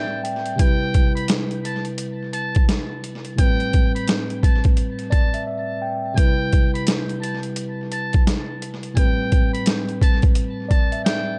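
Echo-heavy and steeped in digital ambience, this soulful, confident boom-bap hip-hop excerpt at 86 BPM in C major puts a gritty, overdriven, pitched-down sampler-style drum kit up front, with a thumpy kick and a large-room sound, beneath a mellow tine electric piano heard through its built-in speakers on Am9 and Cmaj7 chords, while a buzzy, breathy trumpet with metal mute plays a jazz-style solo melody between G5 and B5 with light vibrato, scooped notes and tape echo over swung sixteenths and a brief break at 5.5 seconds.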